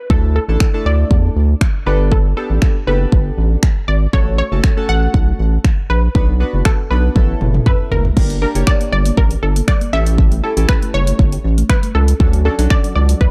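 A dark, warm production bathed in digital ambience carries this summery, euphoric dance-pop excerpt at 119 BPM in a straight 4/4, where an up-front pop drum kit with a punchy kick, hi-hat, finger snaps, toms and crash cymbal sits beside a deep, round analog bass with sidechain pumping, glossy chorused retro synth keys that also pump under the sidechain, and a lush, detuned unison pluck carrying the melody through digital delay, all leading through a drum fill from 7.2 seconds and a keys fill from 7.4 seconds into a shift at 8.2 seconds, where a gentle, tine-like thumb-piano-style synth pluck adds arpeggios with chorus and delay in the background as the chords move from Gm through A7 to Dmaj7.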